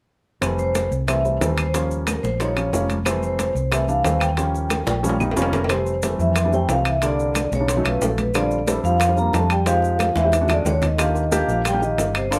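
A metallic, vintage-toned vibraphone with medium-hard mallets and medium motor vibrato carries the melody in this lively, danceable Afro-Cuban jazz excerpt at 182 BPM in F major, while a dark, round hollow-body electric bass sits up front and a short-sustain grand piano comps through chords like Fmaj7, Eb7 and Bb69. Timbales with a metal shell ring close and dry alongside background congas, tight high-tuned bongos, woody claves and grainy maracas, with drum fills at 4.7 and 10.0 seconds. A breathy, mellow trombone with light vibrato enters at 5.5 seconds as a soft-attack second line in the background, all in light reverb with some lossy compression artefacts.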